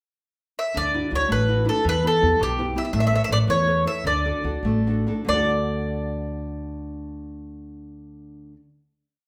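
Romantic and sunny, this short Italian folk serenade in 6/8 opens with a brief pickup before the picked mandolin carries a free, motif-less melody in double strings, sitting up front. Beneath it, a warm, fingerpicked classical nylon-string guitar plays oompah bass notes and chord figures with audible finger squeak, while a woody pizzicato upright bass marks root and fifth on the main beats. The trio plays live in one room, bathed in a generous large-studio reverb, easing into a slowdown from 2.9 seconds before settling on a final chord at 5.3 seconds.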